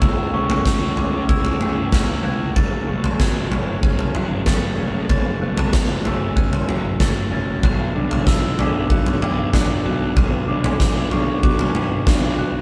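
Captured with light reverb as a band playing live in one room, this hopeful, euphoric post-rock excerpt at 95 BPM in straight 4/4 puts a huge arena drum kit up front, with a fat snare, punchy kick and toms in a hall sound, while an electric guitar through a small old amp picks slightly broken-up, lo-fi arpeggios, a glockenspiel played with rubber mallets adds mellow, bell-like arpeggios high above, and a fuzz-overdriven picked electric bass gives a punchy low end, these three sitting in the background as the chords move from A/C# to F#m at 2.6 seconds and Bm at 7.6 seconds.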